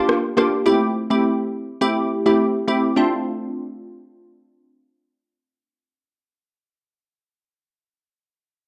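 A lightly swung sixteenth-note afrobeats groove in 4/4 opens this hypnotic, sultry fragment of a longer piece, with an electronic rim click that sounds only between 0.1 and 0.5 seconds, re-recorded in a large room. A glassy, detuned wavetable pluck carries the accompaniment up front through the whole 6.7 seconds, its bright, fast-attack notes decaying over a sine and noise layer with a filter sweep and chorus as the chords move from Gm7 to Am7 and settle on Dm7 at 3.0 seconds. A moderate digital room reverb surrounds the dry, gritty hardware sound.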